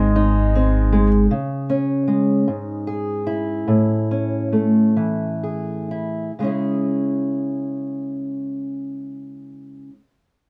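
Set in a slow 6/8 with a straight feel, this short cut from a longer acoustic folk-pop ballad feels intimate and heartbroken, and it slows down from 1.3 to 6.4 seconds. A fingerpicked old ladder-braced acoustic guitar sits up front as the accompaniment throughout, its old strings giving a dark, boxy, woody tone. At the opening, a felt-muted upright piano adds soft, mellow arpeggios with audible action noise. A pizzicato upright bass on gut strings also plays up front, thumpy, until 1.3 seconds. A fingerpicked flamenco guitar carries a barely audible melody with finger squeak for the first 0.9 seconds. Light reverb frames the dark, warm production, and the harmony moves through a major seventh chord before returning to its minor home.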